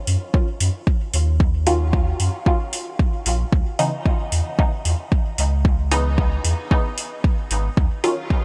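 A cavernous, deep dub techno excerpt in light reverb, where a round, sine-based sub bass pumps under a layered, up-front kick drum and overdriven metallic hi-hats that sound re-recorded in a large room, while from 1.7 seconds a muted, detuned sawtooth chord stab with a filter pluck, phaser and dub echo pumps through D#m, C#m and D#m9.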